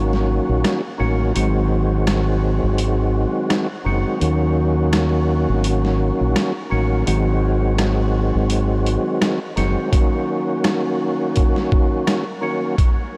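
A dreamy mix drenched in a huge ambient reverb frames this reflective, gritty boom-bap hip-hop excerpt, moving at 84 BPM in 4/4 with a swung sixteenth-note feel in Eb dorian. A percussive tonewheel organ carries the harmony up front, alternating between Ebm7 and Ab7 with a full, lightly overdriven tone, third-harmonic percussion and chorus vibrato through a stopped rotary speaker, filtered at both ends of its range. Underneath, a fingered electric bass sounds dark, round and punchy, with a direct, amped character, before dropping out at 9.7 seconds. The sampler-style drum kit is compressed and pitched down, pairing a thumpy kick and medium-tuned snare with rim clicks and hi-hat, all carrying a tape-warm grain from being re-recorded in a small room. The kick falls silent from 8.5 seconds, leaving the organ, bass, snare, rim and hi-hat to ride the reverb, then returns at 9.9 seconds as the chords settle back on Ebm7.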